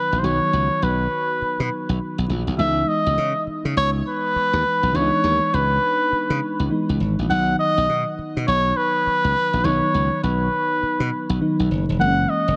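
Bouncy and flirty, this short excerpt from a longer R&B piece in a new jack swing style moves at 102 BPM in 4/4, with a swung sixteenth-note feel in B major. A cup-muted trumpet carries the melody up front, its veiled, breathy tone softened by light vibrato and a smooth top in a jazz-styled solo voice. Beneath it, a mellow FM electric piano supplies round, dark accompaniment with a fast attack that decays, colored by chorus and a faint noise layer. A bright, punchy slap bass sits close and direct, entering at 0.1 seconds and anchoring the low end. The harmony moves from B to C#m7, returns to B at 7.3 seconds, and turns to F#7 at 12.0 seconds, all bathed in a moderately lush hall reverb.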